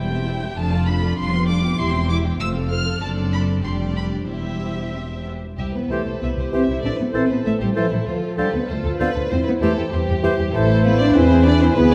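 Classical-period orchestral music in C major, quick at 98 BPM in 2/4 yet played with rubato, this excerpt from a longer movement feels restless and urgent. Muted strings open together, veiled and dark with vibrato: violins carry the melody and a second line, violas accompany, and cellos and double basses hold the bass, the basses sitting up front. At 5.6 seconds a mellow horn section adds sustained chords, and from 5.9 seconds an airy, hollow flute, a vintage-toned clarinet and a roomy oboe join with second lines while a smooth bassoon accompanies, all woodwinds set back in a moderate concert-hall reverb as the harmony turns toward A minor and closes on E.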